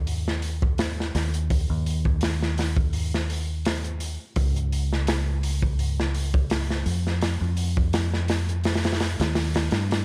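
A deep, dark fingered electric bass opens this smoky, cinematic trip hop fragment, its round tone sitting low beneath a gritty, saturated breakbeat kit that arrives almost at once with hi-hat, tight kick and a medium-tuned snare. The drums sit up front with a mid-forward, rolled-off top, and a lightly swung sixteenth feel keeps the groove loose over a dry sound dusted with vinyl crackle. Near the end, at 8.6 seconds, the kick drops out, leaving hi-hat, snare and bass to carry the final moments.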